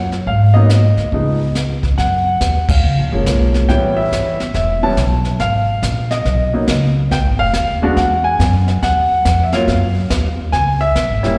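Cool and smoky, this jazz piano trio passage, cut from a longer piece, swings at 140 BPM in 4/4 in F# major. The grand piano carries the melody with a natural tone, long sustain and a touch of slapback echo, sitting up front alongside the woody, pizzicato upright bass on steel strings. A brushed drum kit joins at 0.1 s, with dark cymbals, a medium-tuned snare and a boomy kick giving a small-room feel. The music moves into a new section at 2.0 s, with a band accent at 2.6 s, as the harmony travels from F#maj9 through A9, G#m and Fm7b5 to Eadd9, D#madd9 and C#m7. It sounds like a live gig heard through the venue's PA, with light reverb, recital hall reverb and studio ambience around the trio.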